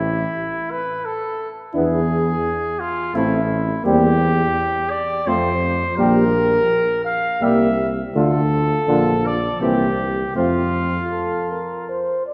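Warm and triumphant, this brief excerpt from a longer classical brass quintet piece moves at 84 BPM in 3/4, its uneven beats stretched and relaxed by rubato, settling into F major from 3.9 s. The trumpet carries the melody up front with a soft attack and a distant, roomy presence, while the tuba anchors the bass beside it, its low notes shaded with vibrato. At 1.7 s the mellow, close-miked flugelhorn enters with a second line, joined in the background by the dark, smooth-topped French horn and, at 1.8 s, the clear, distant trombone as accompaniment. The harmony passes through chords such as A5, Am, F, Gm/Bb and Dm before closing its phrase on F at 10.4 s. A wet church reverb gives the ensemble a long, resonant hall sound.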